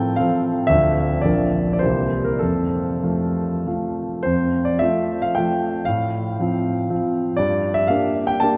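A solo concert grand piano, deep in the bass and up front, opens this short fragment of a longer romantic classical piece: a rustic, proud triple-time dance in dotted rhythms, played with supple rubato over a cadence that moves from F/A through Dm, Bb and C7 home to F, then turns to a second phrase at 4.3 seconds that leans toward Gm, all ringing out in the long, echoing reverb of a vast cathedral.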